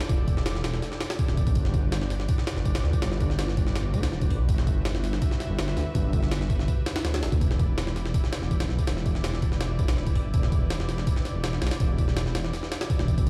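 A straight 4/4 drum and bass groove at 164 BPM drives this dark, atmospheric jungle excerpt in E minor, built on a sampler-style kit of thumpy kick, high-tuned snare and hi-hat that sounds pitched up, compressed, gritty and tape-warm, sitting up front in the mix. Beneath it, a detuned sawtooth bass enters at 0.1 seconds and holds sustained notes between D1 and D2, its unison voices beating against each other for a deep, rumbling weight that also sits up front. Far behind, a bright symphonic string section bows sustained chords between E4 and E5, carrying light vibrato and a biting, intense edge despite its distant placement. The harmony moves from Em7 to Gmaj7 at 1.6 seconds and returns to Em7 at 7.4 seconds. A large studio reverb gives the whole piece the sense of being played on a big sound system in a bare room, and the passage is cut from a longer piece.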